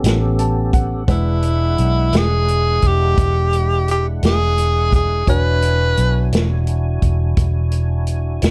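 Dark, lightly reverberant production frames this gritty, laid-back slow blues in 12/8 at 57 BPM in E mixolydian, where a clear concert grand piano opens with a fill from 0.0 to 1.1 seconds before settling into the background, a fat tonewheel organ holds lightly overdriven chords with chorus vibrato, key click and slow rotary speaker, a round, foam-muted fingered electric bass sits up front, a small-room vintage drum kit offers a punchy kick and rolled-off top, and a bright, present tenor saxophone carries the melody from 1.1 to 6.3 seconds with vibrato, subtone and scooped notes as the harmony moves from A9 to E9.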